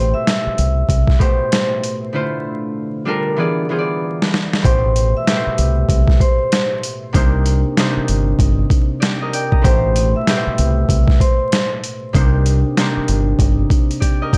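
Boom-bap hip-hop at 96 BPM in A minor with a tough, reflective mood and a swung 4/4 feel, where a close-miked, metallic vibraphone melody rings over fingerpicked concert harp chords drifting through Am9, Dm9 and Cm9, a round, dark fingered electric bass sits up front, and a compressed, gritty sampler-style kit with a thumpy kick and medium-tuned snare enters at 0.3 s, moves into a break at 2.1 s that closes with a drum fill at 3.4 s, and carries on after the vibraphone falls silent at 11.7 s, all set in a dry hardware sound with vinyl crackle and little reverb.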